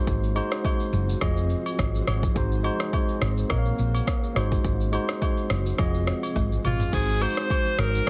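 With a lightly swung 16th-note groove at 105 BPM, this joyful, romantic afrobeats excerpt in Ab mixolydian sets a deep-kicked, overdriven electronic drum kit and a round, punchy hollow-body fingered bass up front beneath clean tine electric piano accompaniment, a blurred, detuned granular cloud pad pumping in the background, and dry agogo bells and woodblock, with a drum fill at 6.4 seconds ushering in a bright, close-miked alto saxophone melody with light vibrato at 6.7 seconds, all pressed into a heavily compressed, radio-like sound.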